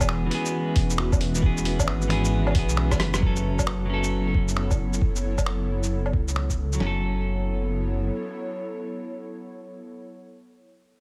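Melancholic and ghostly, this future garage passage moves with a swung sixteenth-note feel over an E chord that shifts to F# minor, all bathed in light reverb. A clean, up-front electric guitar plays accompaniment through a digital delay while an airy, breathy pad with a warbling vintage chorus holds soft sustained chords, and a deep, rumbling detuned saw bass pumps beneath them both. A muffled, pitched-down lo-fi sampler kit, overdriven and compressed, supplies a thumpy kick, snare, finger snaps, hi-hat, rim click, shaker and woodblock, with a drum fill at 2.9 seconds before the drums stop near 6.9 seconds and the bass falls away at 8.1 seconds.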